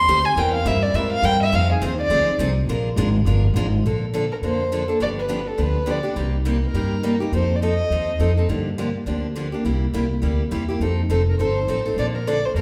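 A dark, intimate bowed violin opens this lively, charming excerpt of acoustic string swing, playing sul tasto with a soft attack and light vibrato over a woody, growly pizzicato upright bass, with a bright, boxy picked parlour guitar joining at 0.1 s for accompaniment. The violin carries the melody through the opening and into the next section, stops at 8.3 s, and returns at 11.3 s, while bass and guitar keep the swung changes going beneath. All three sit up front, as a band playing live in one room, bathed in a large studio reverb.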